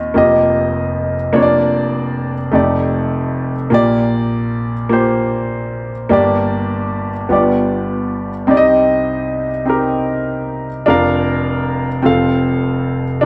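A warm, intimate grand piano plays alone in a soulful, hopeful gospel passage in a straight 6/8, its natural, up-front tone carrying audible action noise through a moderate studio reverb as rich chords like F9sus4 and F13 give way near 6.1 seconds to a turn through Gm, G7 and Cm before settling on F, cut from a longer piece.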